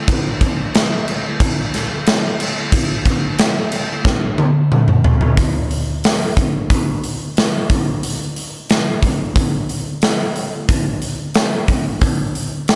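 Rock drum performance at 90 BPM in a straight 4/4, aggressive and heavy in mood, taken from a longer piece. An acoustic kit sits up front in a big room with light reverb, pairing a punchy kick and medium-tuned snare with bright crash and hi-hat cymbals and toms. A drum fill from 4.1 to 5.4 seconds leads into a new section that carries through to the end at 12.8 seconds.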